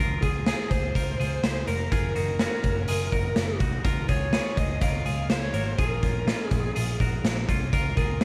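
Bright and nostalgic, this short cut of jangly indie pop moves in a straight 4/4 over a Db6, Gbmaj7 and Bbm7 progression, with vinyl crackle and light studio reverb around it. A twangy, clean electric guitar plays picked arpeggios with slapback echo while a vintage muted picked bass, round and foam-muted, holds the low end from the start. From 0.2 seconds a gritty, saturated garage drum kit sits up front with a punchy kick and a pumping stone-room sound, and a bluesy overdriven lead guitar carries the melody through distortion, slapback and tape echo.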